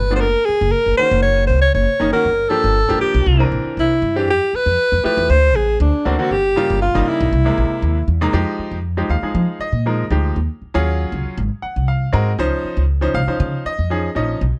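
A breathy alto saxophone and a woody upright bass open this intense, funky electric jazz fusion passage, cut from a longer piece, with a bright grand piano joining almost at once. The tempo sits at 118 BPM in a straight 4/4 feel, centred on F minor, and the harmony moves through rich extended and altered chords such as Gm7, C9, Fmaj9, C7alt and Fm9. Up front, the saxophone carries the melody in a clear, jazz-style solo voice with light vibrato before falling silent at 8.1 seconds. The pizzicato bass, dark and thumpy on gut strings, anchors the low end throughout, while the polished, brilliant piano plays with short sustain and steps forward with a fill at 11.4 seconds. In the later stretch the chords shift to Ebm11, Ab9 and Dbmaj9 under piano and bass alone, all set in a light reverb.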